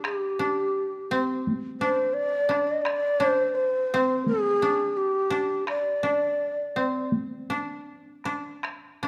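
A moderate recital-hall reverb frames this short, calm and austere excerpt of Japanese chamber music, with a dark, warm production, moving at 84 BPM in 4/4 with an uneven, rubato pulse and a tuning of A4 = 436 Hz. Up front, a breathy, hollow shakuhachi carries the melody in long, straight tones with soft attacks until 7.1 seconds, while a woody, fingerpicked koto plays a second line. A taiko ensemble struck with heavy sticks provides the percussion, and both the koto and taiko continue to the close at 9.1 seconds.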